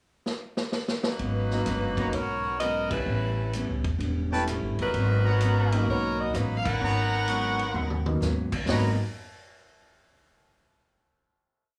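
Dramatic and brassy, this short big band swing piece opens with a drum fill at 0.3 s before the band enters around 1.2 s, with a woody, thumpy upright bass playing a two-feel beneath a clean hollow-body guitar strumming jazz chord shapes in four. An up-front saxophone section carries a motif-based melody in four-part block harmony with vibrato and plate reverb, while a trumpet section adds soft-attack, closely voiced syncopated stabs from 2.0 s and an intimate grand piano comps in rootless voicings. The vintage kit, with dark cymbals and a punchy kick, keeps a ride pattern and fills again near the end, as band accents punctuate the tune ahead of a final chord in a small club room.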